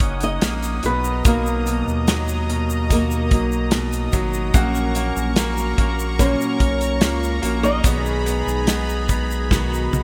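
Bright 1980s-style digital production with light reverb and small-room ambience frames this melancholic, longing pop ballad at 73 BPM in 4/4, where a dark flamenco guitar carries the melody over a brilliant baby grand piano with audible action noise, a lush detuned sawtooth pad with chorus and ring modulation, a full-bodied fingerpicked steel-string acoustic guitar with subtle chorus in the background, a deep saturated sub bass and a punchy, up-front country drum kit that closes with a fill at 9.5 seconds, while a grainy egg shaker enters at 0.2 seconds and a tight classical-style French horn section adds a second line from 4.5 seconds.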